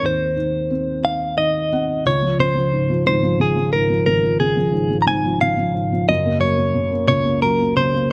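Set in 6/8 with a straight feel, this tender, heartfelt pop fragment moves at 60 beats per minute counted in dotted quarters, in Db major with tuning pitched at A4 = 441 Hz. A felt-muted upright piano carries the accompaniment, its tone soft, dark and intimate, with thick felt and audible action noise sitting up front. Above it, a clean, direct-recorded electric guitar plays the melody with a picked, compressed attack and a shimmering harmonic tremolo, also close and present. The harmony opens on Ab, and from 1.0 seconds the piano adds a brief fill that leads into a new section at 2.1 seconds, where the chord shifts to Dbmaj7 before settling on Gb at 6.1 seconds. A moderate echo-chamber reverb and a small room ambience lend the pair a gentle, mellow glow. The passage is cut from a longer piece.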